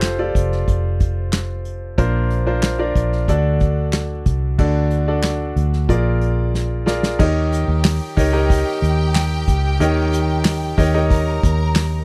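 A clear, smooth concert grand piano, a dark, round, foam-muted electric bass and an acoustic drum kit open this earnest, driving piano-led pop fragment together, moving at 92 BPM in a straight 4/4. The piano carries the accompaniment with deep bass and a vintage character, while the amped bass sits up front with a punchy low end. The drums have a small-room sound, with a fat snare, punchy kick, hi-hat and crash cymbal played with bundle sticks, alongside handclaps. Harmony moves from Fadd9 to Bbadd9 and D, then to Bb7, and a drum fill at 6.5 seconds leads into a new section, where a rich, focused studio violin section enters at 7.2 seconds on a bowed second line with vibrato over a D#7 chord. The recording is dry and close, with a 1970s studio character that keeps the piano, bass and drums up front.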